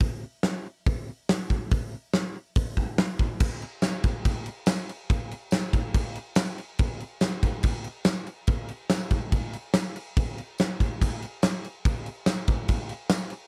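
Swaggering and brooding, this short rock excerpt at 142 BPM in a straight 4/4 opens on a polished, gated 80s drum kit, up front with a fat snare, tight kick, bright crash and hi-hat in a big, airy room, joined at 3.8 seconds by a very quiet, jingly tambourine that plays until 13.2 seconds.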